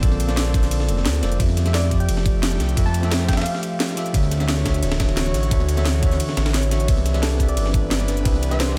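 A lightly reverberant, uplifting liquid drum and bass excerpt glows with a bell-like tine electric piano trailing diffuse ambient delay over an airy, breathy chorused pad and a smooth, saturated synth bass up front, driven by a knocking electronic kick, a cracking-snare kit with crisp hats and a gritty, high-passed breakbeat layer, while a round, gentle FM lead with chorus and delay drifts in the background from 1.7 to 3.7 seconds and again from 7.2 seconds over lush major-ninth chords.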